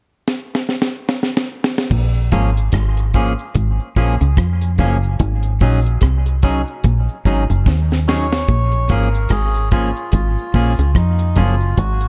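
A loping, swung 73 BPM dub reggae groove in Bb minor opens with a dry, tight-kicked drum fill before a round, foam-muted fingered bass, a picked semi-hollow guitar riff, a compressed, very quiet fingered semi-hollow guitar washed in dub echo and a close cabasa settle over Bbm7 and Ab7sus4, with a reedy, breathy melodica entering at 8.1 seconds to lend this hypnotic, spacious excerpt a mellow, echoing melody in a dark, small-room production.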